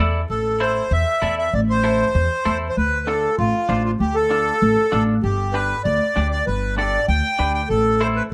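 Set in a light reverb, this short fiery, passionate cumbia clip in A minor moves at a brisk 194 BPM in straight 4/4, with a reedy, up-front accordion carrying the melody from 0.3 seconds over a progression of Am, Dm and G back to Am. Beneath it, a woody, thumpy upright bass plucked pizzicato anchors the low end, while a bright, clean, compressed semi-hollow electric guitar plays picked accompaniment further back in the mix, both sounding from the very start until about 8.2 seconds.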